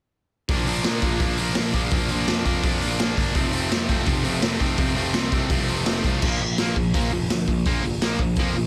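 Energetic and upbeat, this brief punk rock excerpt at 167 BPM drives a bright, double-tracked overdriven guitar riff over a growly fuzz-picked bass and a raw garage drum kit with a punchy kick, dark cymbals and a gritty, saturated small-room sound, moving from Bb to F before shifting to a new section at 6.2 seconds on a Bb5 chord.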